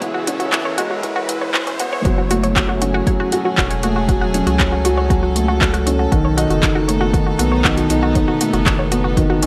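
A mellow, boxy baby grand piano riff with tape echo leads this intimate, cinematic piano and strings electronica passage, cut from a longer piece, in F# dorian at 118 BPM; over the first 2.1 seconds a background riser and a filter sweep on lush, detuned sawtooth pluck arpeggios with tape echo and sidechain pumping build toward the drop at 2.1 seconds, while from the start a deep house kit of handclaps and metallic hi-hats and a deep electronic kick, both overdriven, play alongside a round analog bass with sidechain pumping and a high-pass filter and soft-attack sul tasto strings holding dark sustained chords over C#m7, F#madd9 and B7, in light reverb and digital ambience.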